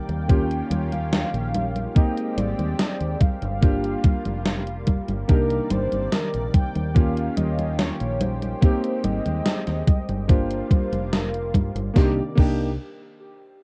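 Melancholic and nostalgic, this vaporwave fragment, cut from a longer piece, drifts at an unhurried pace in a straight 4/4 feel through a looping cycle of Eb7, Abmaj7, Gm7 and Cm9 chords. A velvety synth lead carries the melody with vibrato and a smooth, detuned character, wrapped in chorus, tape echo and plate reverb, while an electric grand piano with a clangy low end and short sustain supplies the accompaniment. Beneath them, a lush unison pad holds thick, airy chords with a soft attack and a noise layer. A bright, foam-muted fingered electric bass sits up front with tube saturation, and a thumpy electronic kick arrives at 0.3 seconds as the loudest element. A gated 80s digital drum machine adds congas, crash cymbal, hi-hat and a gated-reverb snare, both drum parts carrying gritty 12-bit sampler texture, all set in a rough home-demo mix with a cassette tape patina and light reverb.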